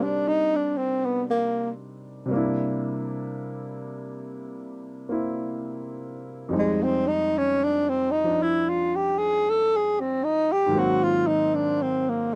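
A slow swing in 4/4 at 57 BPM, with the eighth notes swung, sets the unhurried pulse of this melancholic, intimate jazz ballad in C minor. A breathy tenor saxophone carries the melody as a solo across the whole 12.4-second fragment of a longer piece, its dark, whispered subtone shaped by vibrato, soft attacks and scooped notes. Beneath it, a baby grand piano provides accompaniment with an open tone and long sustain, sitting somewhat lower in the mix than the horn. The harmony moves from Cm9 to C7 at 2.3 seconds, then to Fm7 and finally Ab9. Both instruments sit up front in a dry, close recording with little reverb, giving the sound the closeness of a 1970s studio session.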